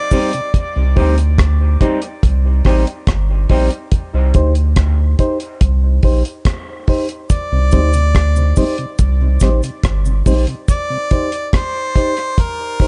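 A dry, tight reggae drum kit of kick, hi-hat and rim click sits up front in a straight 4/4 beneath a round sine sub bass that enters at 0.8 seconds, anchoring this deep, spacious dub reggae excerpt where reedy electric piano stabs run throughout, a slightly broken-up, lo-fi electric guitar with subtle chorus plays only in the opening seconds, a soft, flute-like tonewheel organ with slow rotary speaker and key click sits in the background, a punchy harmonica with scooped notes takes the melody briefly at the very start and again from 7.3 seconds, a close egg-shaker cabasa murmurs low in the mix, and dub echo trails the harmonica, guitar, organ and piano within a dark production with little reverb.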